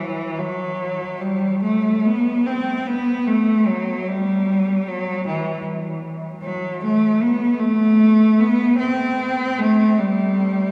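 A single bowed cello, rich and intense with a smooth top and vibrato, sits up front for the whole 10.7-second fragment of a meditative, lonely classical piece, moving freely in rubato around 50 BPM in 6/8 between E3 and C4, tuned to A4 = 436 Hz and surrounded by a vast cathedral reverb that lingers for 5.6 seconds.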